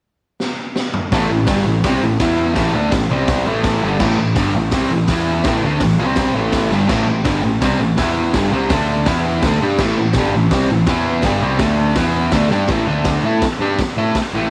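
A gritty small-room recording with a saturated, punchy drum kit and a double-tracked fuzz guitar up front, this menacing garage rock excerpt drives at 166 BPM in A minor. The drums open alone with a fill at 0.4 seconds, their high-tuned snare and dark cymbals sitting in a mid-forward, rolled-off sound. At 1.1 seconds the bright, distorted guitar riff and an overdriven, growling picked bass in the background join in, cycling through a chord progression before a short closing turn at 12.7 seconds.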